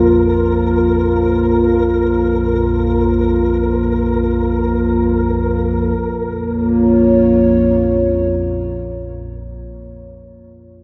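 In free time, this desolate, unsettling dark ambient drone, cut from a longer piece, sets a moody analog pad of detuned sustained chords with chorus over an ominous, wave-folded rumbling drone, while a flickering granular texture hovers until 6.0 s and the harmony settles from Bbsus2 to Bbm, all bathed in a cavernous cathedral reverb.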